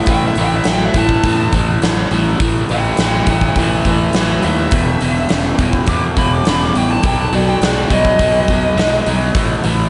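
A crunchy, bright, double-tracked rhythm guitar riff and a dark, smooth lead guitar solo open this driving, gritty blues rock and southern rock passage at 104 BPM. The riff sits up front with slapback echo, and the lead carries overdrive and its own slapback. A growly, fuzz-drenched fingered bass and a huge, polished arena drum kit with a punchy kick and a medium-tuned snare join at 0.1 s, while the harmony moves through A5, E5 and B before returning to A5 at 9.4 s. A lush hall reverb gives the whole cut a big arena sound.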